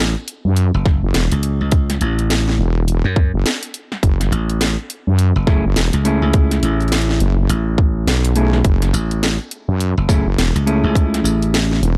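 Funky and swaggering, this glitch hop excerpt in F# minor moves at 104 BPM with a swung 16th feel, as a punchy, growly slap bass with tube saturation and a heavy, wobbling sawtooth-and-sine wobble bass with chorus sit up front over an overdriven electronic kick drum and a layered kit of cracking snare, bright hats and tambourine, all resting on a single F#m9 chord until a dark, clean, fingered electric guitar adds stabs with sidechain pumping and tape echo from 5.5 seconds, the whole captured in a dry, gritty hardware sound with transformer saturation.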